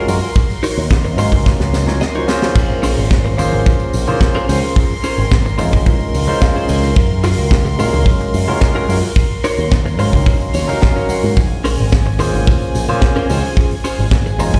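Barky tine electric piano with digital delay, dark sul tasto strings and a clean, direct-recorded electric guitar with lush chorus open this cosmic, sensual nu-disco excerpt in Bb minor at 109 BPM, with the piano and strings pumping against a tight, up-front kick that enters at 0.4 seconds. A bright, picked bass with an envelope filter sits forward in the mix, joined by a natural small-room funk kit with a high-tuned snare, tambourine and woodblock, plus very quiet ringing congas; a drum fill lands at 1.5 seconds, and short guitar fills recur through the passage. The chords move from Ebm7 through Bbm9 and Gbmaj9, all heard as if played over a big sound system in a bare room with a large studio reverb.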